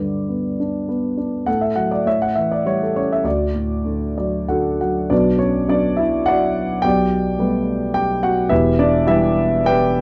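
A dark, mellow concert grand piano sits up front with deep bass in this relaxed, sunny excerpt of lyrical classical solo piano in a rubato 3/4, wrapped in light reverb, adding a fill from 3.9 seconds before a new passage opens at 5.1 seconds.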